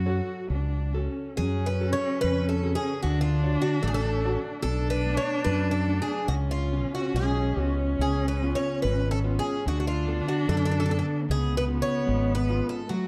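A shimmering, octave-doubled twelve-string acoustic guitar carries the melody up front in this mournful, longing fado-style ballad excerpt, with a focused bowed cello singing a second line with vibrato, a full-bodied fingerpicked nylon-string guitar accompanying, and a round fretless electric bass with subtle chorus anchoring the rubato flow over a moderate recital hall reverb and dark production.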